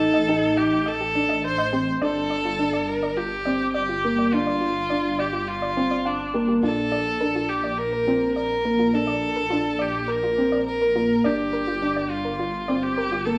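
Hypnotic and intimate, this piano and strings electronica fragment places a rich, bowed solo viola with smooth vibrato up front, over a mellow, woody upright piano riff trailed by tape echo, a deep, rumbling detuned saw bass, and soft, warbling pluck arpeggios with chorus and tape echo tucked in the background, set in a moderate recital hall reverb.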